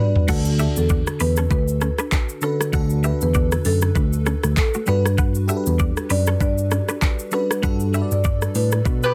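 This sunny, joyful afrobeats excerpt opens on a break and drum fill, with a woody marimba melody, a lush, dreamy FM electric piano with a soft pad layer and chorus, and a twangy, picked clean guitar riff shimmering with harmonic tremolo and delay. An overdriven electronic afro-pop kit sits up front with a knocking kick, metallic hats, handclaps, rim clicks, shaker, toms and crash, while a worn, slightly out-of-tune tine electric piano carries the bass through a combo amp as the harmony moves from D to Gmaj7 at 4.9 seconds. A band accent arrives at 7.6 seconds, and a mellow, roomy horn section with light vibrato enters at 9.0 seconds, all within a dense, heavily limited, low-passed modern mix.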